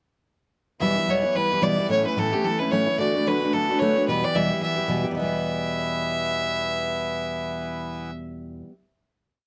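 Celtic folk in the form of a short, dark yet lively and spirited reel with swung eighths, where a clear, bowed fiddle played by one player leads with a smooth, even, motif-based melody in period phrases and a light vibrato. Up front beside it, a full-bodied steel-string dreadnought guitar strums eighths in open chord shapes through Em, A and D, while a reedy, dry-tuned accordion sits quieter underneath as a close-miked drone. All three enter together at 0.8 s within a light reverb, and the tune resolves onto a held final chord from 5.2 s.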